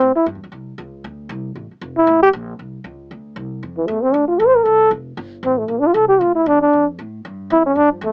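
The recording has the worn, warbling sound of old cassette tape, with a pitch that drifts and the narrow tone of a small speaker, all inside a light reverb. It is a short cut from a longer piece of small-group swing and bop jazz in D minor, moving at a brisk 233 BPM in 4/4 with a swung eighth-note feel and a cool, swinging mood. A breathy trombone sits up front and solos for the full 8.1 seconds, ranging from E3 to C5 with a dark, smooth-topped tone, a soft attack and a light vibrato. Beneath it, a woody acoustic upright bass with steel strings is plucked far back in the mix, staying between F1 and A2. The harmony runs from an A7#9 through Dm7 and A, then back to Dm7 at 3.1 seconds before moving on to Gmadd9, Dm and Em. The tuning sits a little below standard pitch, with A4 at 437 Hz.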